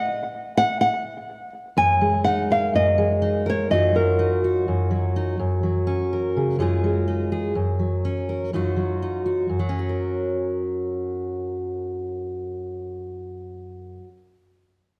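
Anthemic and hopeful, this folk passage cut from a longer piece moves at 124 BPM in a straight 4/4 in F# major, tuned slightly below standard pitch. A small, up-front nylon-string guitar opens alone with a fingerpicked melody touched by analog delay, and at 1.8 seconds a full-bodied dreadnought steel-string guitar joins with fingerpicked accompaniment. The nylon melody stops at 4.9 seconds, leaving the steel-string to carry chords that keep returning to an F# bass, all set in the moderate reverb of a scoring stage.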